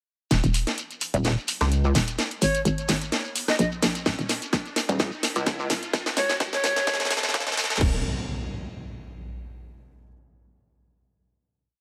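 Swung sixteenths drive this swaggering, aggressive bass house build: a garage drum kit of cracking snare, rim clicks, hi-hats and crash sits in a small room, with a grainy shekere in the background and a tight four-on-the-floor electronic kick arriving at 4.1 seconds. A hollow, bouncy FM bass plays chopped, overdriven phrases pumped by sidechain, answered in bursts by a heavy, saturated pluck wobble bass with chorus and changing wobble speed, while a breathy, bright jazz flute adds short reedy phrases through tape echo from 2.4 seconds. Electronic riser and impact effects, a filter sweep and a drum fill push the build toward a final note at 7.8 seconds.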